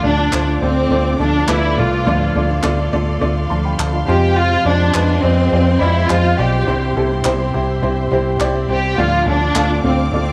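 A dark, lush violin section carries the melody up front in this uplifting piano-driven pop excerpt at 104 BPM, over a clear, slightly detuned upright piano, a soft sul tasto string section holding sustained chords, a full-bodied fingerpicked acoustic guitar riff in the background, a round, foam-muted vintage electric bass, and crisp group handclaps from 0.3 s, all in moderate studio reverb as the harmony moves from Dm through Fm and C back to Dm.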